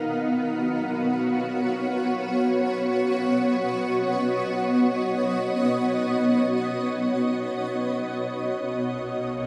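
A single granular cloud pad carries this ambient piece on its own, its blurred, detuned tone blending sine and sawtooth colors into a bright haze that sits up front. It spans from B2 up to F#5, with slow attacks and long releases that keep each sound sustained and gently evolving. The music floats in free time in B lydian, resting on one Bmaj9#11 chord from the first moment, which gives it a weightless, peaceful mood. The pad's own built-in reverb, analog chorus and diffuse ambient delay sit inside a huge reverberant space with a decay of about 8.5 seconds, and the whole dreamy mix carries a cassette-tape character. Lasting 9.5 seconds, this excerpt is cut from a longer piece.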